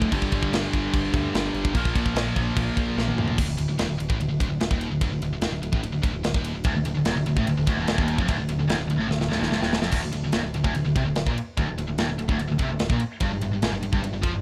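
Aggressive and dark, this heavy metal excerpt drives at 147 BPM in a straight 4/4, settling into D minor from 3.4 seconds as a biting overdriven guitar and a bright, scooped high-gain guitar, both double-tracked and up front, churn through riffs over power chords, with the biting guitar dropping out between 3.4 and 6.6 seconds. A growling picked electric bass with overdrive sits in the background, while a tight, saturated metal drum kit with a gritty, rolled-off top and a medium-tuned snare pushes forward, marking fills at 3.0 and 9.1 seconds. The rough home demo mix carries a small room ambience, and the harmony shifts to a Cm9/D at 9.9 seconds before closing on a G7 chord.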